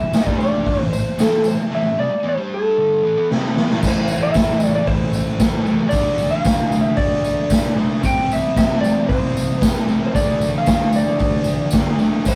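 A dark, slightly broken-up electric slide guitar opens this swaggering, gritty garage rock excerpt at 0.0 seconds, played with fingerpicks and carrying the melody in A minor at 114 BPM in a straight 4/4. Almost at once a double-tracked fuzz guitar digs in beneath it with a picked, distorted riff, while a raw acoustic drum kit sits up front with a punchy kick, a medium-tuned snare, hi-hat and crash cymbal, its sound smooth with a rolled-off top and the ring of a bright stone room. A jingly, saturated tambourine rides low in the mix alongside the kit. After a drum fill around 3.3 seconds, the piece moves into a new section at 3.8 seconds, with the harmony passing from Am through Dm to C5 and D5. The whole thing has the light reverb and rough edges of a rehearsal-room recording.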